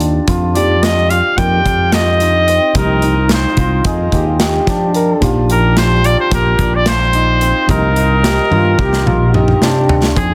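Progressive instrumental band music in 9/8, this tense, brooding passage, cut from a longer piece, moves at 218 BPM counted in eighths with a straight feel. Hammered dulcimer arpeggios ring out bright and shimmering in plate reverb from the very start, over a growly, amped fretless bass sitting up front and a big rock kit with a punchy kick and medium-tuned snare. At 0.6 seconds a clear, vintage-toned trumpet takes the jazz-style melody with vibrato, set in plate reverb and digital delay, while a worn, slightly out-of-tune tine electric piano comps softly in the background. A dark, breathy flugelhorn joins at 3.8 seconds with a second line of whispered, scooped notes, and the harmony shifts from F9sus4 to Bbsus24. The drums close with a fill from 8.5 seconds, all within a moderate studio ambience and a dense, heavily limited modern master.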